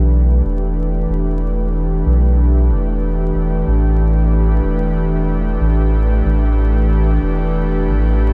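Vinyl crackle and a light reverb frame this short ambient dub fragment, cut from a longer piece and lasting 8.3 seconds. At a straight 93 BPM in 4/4, with tuning set to A4 = 436 Hz, the mood is meditative and deep, resting entirely on a single Em7 chord. A soft dub sub bass sits up front from the first moment, its round tone blending triangle and square waves with a fast attack and sustained notes low in the register. Above it, an airy, breathy pad holds sustained chords through the whole passage, its triangle and sawtooth layers mixed with a noise layer and shaped by a slow attack, long release and chorus. The two parts sound together throughout, leaving a hushed, hovering space.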